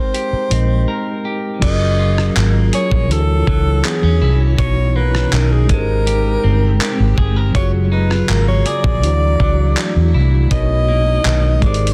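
A breathy, subtoned alto saxophone with delay sings a dreamy, smooth melody over mellow tine electric piano and clean picked electric guitar arpeggios in this 81 BPM contemporary R&B excerpt, joined by a gritty, compressed sampler-style drum kit with thumpy kick, handclaps and rim clicks, a dark, round, foam-muted fingered bass up front, and from 2.4 seconds a blurred, evolving granular pad in the background, all moving through lush major-ninth chords in a dense, heavily limited mix after a brief break at 0.9 seconds.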